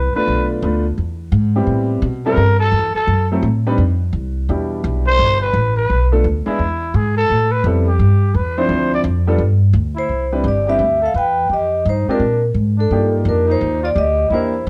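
Small-group swing and bop jazz at 171 BPM in 4/4, this playful, swinging cut from a longer piece moves with a swung eighth-note feel in C major. A growling trumpet takes a solo from the start through 10.1 seconds, its tone mellow yet raspy and gritty, with vibrato and scooped notes, set back in a roomy space. Underneath, a pizzicato upright bass with steel strings sounds woody and thumpy, while a clear baby grand piano comps with an open, long-sustaining voice. At 10.0 seconds a vibraphone played with medium mallets, motor off, steps in with the melody, its metallic, ringing notes sitting up front. The harmony runs through minor ii–V turns before brightening onto Cmaj9 and then sliding toward Ebmaj7, all framed by a dark production with light reverb.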